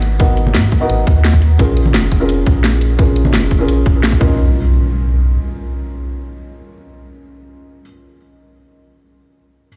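A soft, dark felt-muted upright piano with a touch of delay, a round, deep sine sub bass and an overdriven kit of cracking snare and bright hats open this lush liquid drum and bass excerpt together at 172 BPM in B lydian. A tight electronic kick punches up front from 0.2 s, and hard-handed congas sit distant in the background as the chords move from G#m9 to A#m7, then settle on Bmaj9#11 at 4.2 s, where the drums fall away and an up-front electronic impact arrives. The piano carries on with the impact after the bass stops at 5.4 s, all heard through stone-room reverb, as if played on a big sound system in a bare room.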